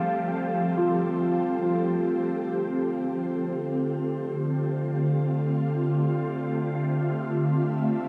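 An ethereal, airy pad and an overdriven tine electric piano open together on a Dm11 chord, the pad holding full-bodied, detuned sustained chords up front through ensemble chorus, phaser and shimmer reverb while the barky, gritty piano spins arpeggios through a combo amp, lush chorus and tape echo until 6.2 s. From 1.5 s a very quiet, mellow analog drone enters low with a slow attack, its pulse-width-modulated tone evolving beneath the pad to the close at 8.1 s. This melancholic, reflective ambient passage in D minor floats in free time, cut from a longer piece, bathed in a huge reverb with a dark production.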